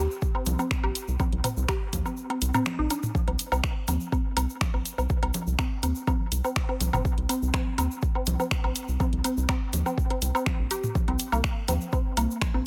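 A rubbery, hollow square bass with a dark, fast-attack filter pluck sits up front and pumps to the sidechain, driving this sparse, hypnotic minimal techno cut in C minor at 123 BPM, with a deep electronic kick that drops out briefly from 2.2 to 3.1 seconds. A juicy, squelchy blip pluck riff carries phaser, dub echo and the same pumping, while a tape-warm analog drum machine adds finger snaps and hi-hat, and layered electronic woodblock, congas and toms trail dub echo. A grainy, close and dry tube shaker ticks in the background, all within a digital ambience.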